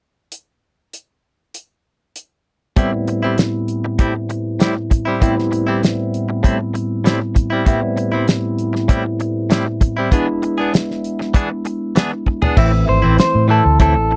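A straight-eighth soul blues groove in 4/4 opens on a damped 70s drum kit alone, with dark cymbals, a fat snare and a tight kick, setting a soulful, smoky mood. At 2.8 seconds a barky tine electric piano with phaser and a twangy, direct-recorded clean guitar playing stabs with tremolo settle over an Am7 vamp that moves to E7. After a drum fill at 12.3 seconds, a round, foam-muted fingered bass and a warm, clean lead guitar melody with spring reverb enter at 12.6 seconds, all in a dry, close 1970s-style studio sound in this short cut from a longer piece.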